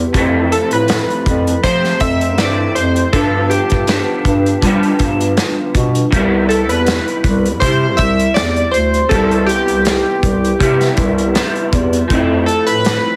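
A gently swung 80 BPM groove in 4/4 from a loose, roomy indie drum kit with a tight kick carries this nostalgic, dreamy bedroom-pop excerpt in C major, where a dark, distant bass clarinet holds the low end, a bright, twangy electric guitar through a small old amp adds lo-fi accompaniment with ensemble chorus and warbly pitch drift, and up-front analog keys with a round, detuned tone, lush chorus and tape echo carry the melody over Fmaj7, G7 and Cmaj7, the mix squeezed into a heavily compressed radio sound.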